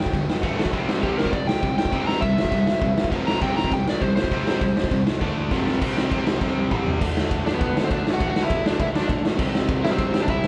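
A raw, up-front garage drum kit with a punchy kick, medium-tuned snare and gritty, saturated, rolled-off sound drives this rowdy, energetic punk rock excerpt, with a dark, hollow-bodied overdriven guitar soloing over two bright, picked distorted guitar riffs in the background and a very quiet, growly fuzz bass, all captured as a band playing live in one room with light reverb, drum fills breaking in at 5.2 and 6.4 seconds before the guitar melody returns at 7.5 seconds.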